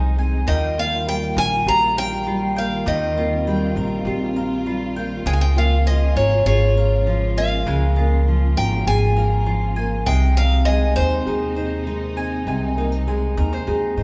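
A reflective, melancholic acoustic folk passage features a boxy, picked archtop guitar carrying the melody up front over a woody pizzicato upright bass, a dark, full-bodied thumb-plucked nylon-string guitar, double-strung bowl-back mandolin arpeggios and intimate sul tasto chamber strings holding soft-attack sustained chords with vibrato, the small band playing live together in one room, bathed in a wet, large studio reverb, as the harmony moves from Ebadd9 to Db6 to Ab/C.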